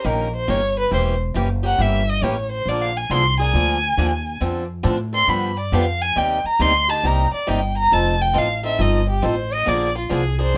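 Acoustic string swing in the jazz manouche tradition, this lively, charming excerpt moves at 137 BPM in 4/4 with a swung eighth-note feel, tuned slightly low at A4 = 438 Hz. A single bowed violin carries the melody as a solo across the full 10.6 seconds, its tone rich with vibrato, expressive portamento and a smooth top end, ranging from F4 up to C6. Beneath it, a picked swing-style acoustic guitar supplies bright, boxy accompaniment, with the occasional finger squeak adding to its close, present character. An upright bass, played pizzicato on steel strings, anchors the low end with a woody, dark and thumpy sound. The harmony travels from Eb7 through Edim7 to Bb7, then on through Dm7, G7, Cm7 and F7 before landing back on Bb7 at 9.7 seconds, all heard in a moderate studio ambience with the three players placed up front.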